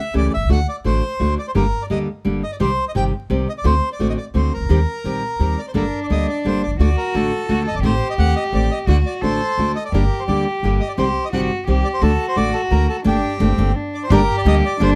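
A woody, thumpy pizzicato upright bass on gut strings sits up front in this sultry, dramatic tango excerpt in G harmonic minor, moving at a rubato 172 BPM in 3/4 beneath a bright, fingerpicked classical nylon-string guitar. A dark, airy bandoneon carries the melody through plate reverb, and a single bowed cello with a rich, period-style gut-string tone joins as a close second line at 5.7 seconds. The band hits an accent at 13.1 seconds, and very quiet, reedy bandoneon stabs arrive at 14.1 seconds, all captured by close, detailed microphones in light reverb over a layer of vinyl crackle.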